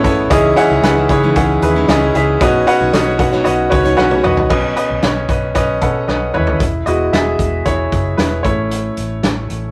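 A bright, up-front grand piano opens this hopeful, uplifting piano-driven pop excerpt at 114 BPM in a straight 4/4, joined from the start by a full-bodied picked acoustic guitar riff sitting in the background, a round, foam-muted electric bass and a loose indie drum kit. The piano carries the accompaniment with a brilliant, intimate tone and audible action noise, moving through C#madd9 and Badd9 chords. The drums sound gritty and saturated, with dark cymbals, a punchy kick and a medium-tuned snare, and fills at 4.0 and 6.1 seconds mark the turns into new sections. The acoustic guitar stops at 4.5 seconds, and from 6.6 seconds the piano takes a solo over E and A chords while the dark, amped bass and drums continue beneath it. The whole take has the rough feel of a rehearsal room, with warm saturation and a moderate studio reverb.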